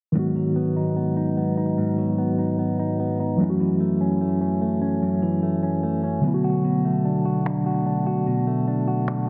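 Heavily compressed and low-pass filtered like a radio broadcast, with light reverb and a filter sweep running from 0.2 s to the end, this short excerpt of contemporary R&B sits in G# minor at 74 BPM with a longing, moody feel. A mellow, clean tine electric piano provides accompaniment up front over G#m7, F#m7 and Bm7, while a picked, compressed clean electric guitar adds arpeggios through a digital delay. Electronic finger snaps with a small-room character arrive at 7.5 s, low in the mix.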